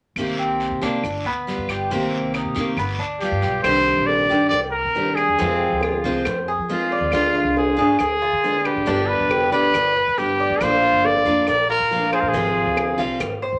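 A wet studio reverb gives this cut from a longer Cuban son and guajira piece a roomy sheen, with a full-bodied steel-string acoustic guitar, finger squeak and all, sitting up front in C minor at 138 BPM. Beneath it a metallic, double-strung tres picks arpeggios, a dark, thumpy pizzicato upright bass on gut strings anchors the low end, and woody claves sit in the background, while a raspy, saturated guiro stops at 3.6 s just as distant, high-tuned bongos with hard hands arrive. A bright pop-style trumpet solo with vibrato and a smooth top enters up front at 3.2 s over chords moving from Cm7 and G7 to Fm, Ddim and Bb, giving the music a nostalgic yet danceable mood.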